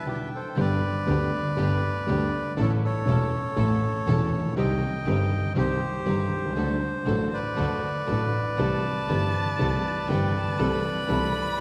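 A long, wet church reverb and a vinyl crackle surround this passionate, playful tango fragment in G major, moving at 120 BPM in 4/4 with a rubato feel. A reedy bandoneon carries the melody up front over a concert grand piano with deep bass and short sustain. A lush symphonic string section adds bowed stabs in the background, and a rich, intimate double bass, bowed sul tasto with light vibrato, enters at 0.6 seconds. A solo violin sings an expressive second line with vibrato and portamento, heard briefly at the start and returning at 8.6 seconds.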